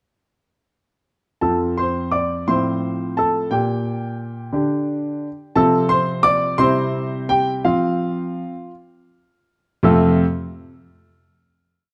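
Cheerful and playful, this short classical-period piano sonatina moves in an unhurried 6/8 at 55-59 BPM in the dotted quarter, set in F major. A single grand piano, clear, smooth and vintage in tone with a short sustain, sits up front from 1.4 s, carrying the tune in octaves over bass notes and chords on the beats as the harmony moves from F through G minor and C before settling on a final F chord at 9.8 s. Close, detailed miking captures the piano, while a moderate recital-hall reverb gives it a sense of space.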